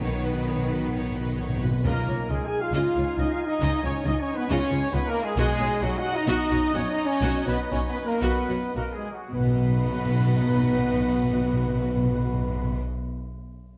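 Heroic adventure film score, triumphant and cut from a longer piece, moving in 4/4 between 106 and 138 BPM in B lydian, as a round, soft-mallet timpani fill opens the first 1.8 seconds beneath a close, rich cello section and a rich double bass foundation, tight French horn chords, a focused violin melody shadowed by a distant second violin line and smooth-topped viola accompaniment, before a crisp, expressive flute line, roomy trumpet stabs and a very quiet, clear trombone section join, the music slowing between 4.5 and 9.3 seconds and the timpani returning briefly at 5.4 seconds and again at 9.3 seconds, all set in a wet scoring-stage reverb with a dark, warm production.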